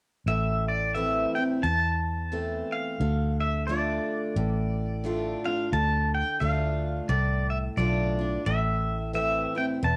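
A twangy pedal steel guitar carries the melody in this brooding, heartbroken honky-tonk and classic country fragment, its bright, clean, compressed tone shaped by fingerpicks, slide and volume swells. It sits up front with a cassette-tape grain and plate reverb. A full-bodied, picked dreadnought acoustic guitar supplies bright accompaniment with the same tape and plate treatment. A dark, round, foam-muted electric bass, fingered and amped with tube saturation, anchors the low end close to the listener. The piece moves at 88 BPM in 4/4 with a light swing on the eighth notes, in A minor tuned slightly under standard pitch, shifting from Am to Dm at 3.0 seconds and back to Am at 8.5 seconds. The whole home cassette recording sits in a moderate studio reverb, with all three parts playing together from 0.3 to 10.0 seconds.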